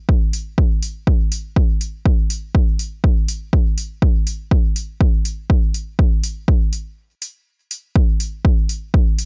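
A straight 4/4 techno pulse at 122 BPM drives this cavernous, deep fragment of a longer piece, led by a punchy, layered electronic kick drum with an overdriven edge sitting up front from 0.1 seconds. Metallic, analog-tinged electronic hi-hats join at 0.3 seconds, also up front alongside the kick. A dark digital ambience frames the pair, and a break from 7.0 to 8.0 seconds briefly interrupts the groove before the same section returns.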